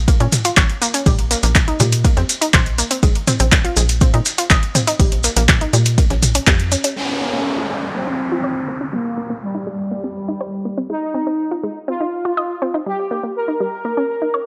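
Driven by a straight 4/4 pulse of deep, tape-warm electronic kick, up-front deep house drums with metallic, low-passed hats, handclaps and toms, a very quiet, gritty sampler-style kit of hi-hat, ride and snare, and grainy maracas in the background, this dark, dramatic melodic techno excerpt pumps a punchy, nasal sequencer bass beneath round, chorused analog pluck arpeggios until the bass, drums and maracas drop away at about 7 seconds, when a bold, fat, brassy synth lead enters with a filter sweep shared by the arpeggios and a downlifter runs until 10.9 seconds, all in a dry, raw hardware sound.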